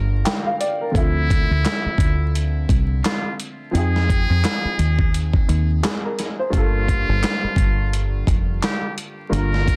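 A swung 86 BPM boom-bap groove from a gritty, compressed sampler-style kit with thumpy kick, snare, hi-hat and handclaps enters at 0.3 seconds over a dark, round, foam-muted fingered electric bass and a worn, woody, slightly detuned upright piano accompanying through Gm9, Dm9 and Fm9 in G minor, while a buzzy, breathy trumpet with metal mute plays a jazz-style solo from 0.9 seconds, giving this reflective, moody hip-hop excerpt a dense, dry, heavily limited sound dusted with vinyl crackle.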